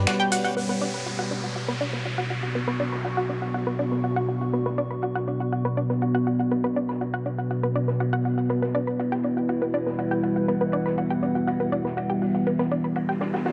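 A dry, gritty hardware recording with light small-room ambience carries this cinematic, dramatic melodic techno cut in B minor at 121 BPM, moving through G, Bm, Em and back to G. A deep, moody ambient pad with a filter sweep holds sustained chords over an evolving, sawtooth analog drone on B2. A bright, round analog pluck runs arpeggios up front through cassette tape and tape echo, while a vintage drum kit of hi-hat, ride and medium-tuned snare sits in the background with dark cymbals. Very quiet, grainy maracas appear only at the very start, and an electronic downlifter and riser sounds from 0.6 s, with a riser returning at 12.8 s. A warbling, nostalgic lo-fi pad with phaser enters at 1.9 s.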